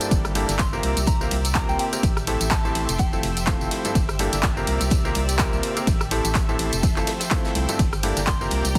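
A swung 125 BPM house groove in 4/4 drives this soulful, energetic piano house cut in G dorian, built on a dry, punchy electronic kick and a punchy analog drum machine of handclaps, hi-hat, ride, rim click and tambourine, with a very quiet, rolled-off indie kit adding hi-hat and snare underneath. A clear, intimate concert grand with audible action noise plays a pumping, dub-echoed riff over a hollow, organ-like FM bass, while a silky, detuned sawtooth string pad and a smooth, very quiet symphonic string section sit in the background through the Gm69, C7sus4 and Am7 changes. A soft, pure synth bell with chorus, phaser and dub echo sings a mellow melody from 0.6 to 3.5 seconds and returns at 8.3 seconds, all inside a heavily compressed, radio-like sound with a small room ambience.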